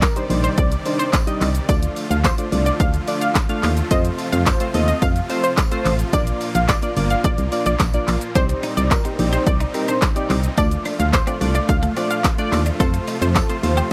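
A dry mix carries this confident, energetic dance-pop excerpt at 108 BPM in C dorian, where a punchy, tape-warm analog drum machine of kick, snare, handclaps, hi-hat and shaker drives a dark FM bass, huge and lush supersaw chords, an evolving, filter-swept analog keys part and a detuned, noise-layered analog pluck melody, all four pumping to the sidechain, while a very quiet, jingly tambourine sits beneath and a clean, twangy twelve-string electric guitar riff enters in the background at 8.4 seconds.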